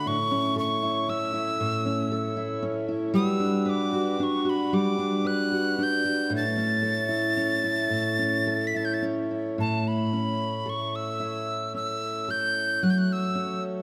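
A wet concert-hall reverb with a 2.3-second decay surrounds this tender, nostalgic Celtic slow air, an excerpt cut from a longer piece, moving at a rubato 56 BPM in 3/4 and A mixolydian. Up front, a breathy, bright metal tin whistle carries the melody with vibrato, tongued chiff and a slapback echo, stopping at 13.6 seconds, while a full-bodied fingerpicked dreadnought steel-string guitar with fresh, dark strings plays the accompaniment. Beneath them a pedal harmonium sustains reedy, mellow chords that seem to breathe, moving from A to Gmaj7 and then, after 9.6 seconds, back to A and on to F#m.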